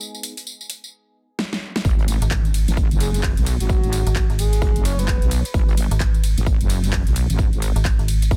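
Gritty and bouncy, this swung bass house clip opens on a big-room dance drum kit with a huge snare, metallic hats, handclaps, ride and tambourine, and a drum fill leads into the drop at 1.9 seconds. Just before it, a punchy electronic kick and a heavy, detuned wobble bass with chorus and sidechain pumping arrive, joined by a faint electronic impact and a very quiet, airy acoustic jazz kit, and at 2.2 seconds a dark, digital FM bass with tube saturation comes in up front. From 3.0 to 5.3 seconds a breathy, flute-like synth lead with vibrato, chorus and digital delay floats over the dense, heavily limited, dry mix.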